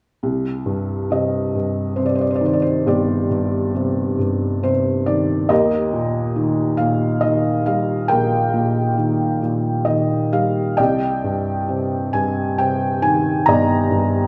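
A felt-muted upright piano opens at 0.2 seconds, playing alone in a lyrical classical style that feels wistful and dark. The tempo sits around 68 BPM in 3/4, but the rubato feel lets the pulse breathe freely. In C minor, the harmony moves from Cmadd9 to Eb at 5.5 seconds and returns to Cmadd9 at 10.8 seconds. The piano spans from G1 up to Bb5, and its soft, mellow tone sounds intimate and close, placed up front with only light reverb around it. This brief passage, cut from a longer piece, ends at 14.3 seconds.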